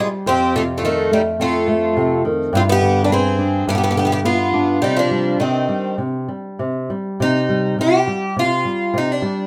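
A fado-style ballad in C harmonic minor, this mournful, passionate passage is cut from a longer piece and moves at 105 BPM in 4/4 with a rubato feel, tuned to A4 = 436 Hz. A picked twelve-string acoustic guitar carries the melody from C4 to B4, its octave-doubled strings bright and shimmering with a boxy, parlour character, sitting up front. A second twelve-string, with fresh strings and a swing feel, plays a lower line from Eb3 to D4 dressed in plate reverb until it stops at 5.9 s. Beneath them, a flamenco guitar supplies the accompaniment from F2 to D4, its thumb-plucked tone warm and marked by audible finger squeak. The harmony moves through F7, Gsus4 and G7 to C minor, and a new section begins at 7.2 s. The rough home demo mix sets the players in a moderate studio reverb.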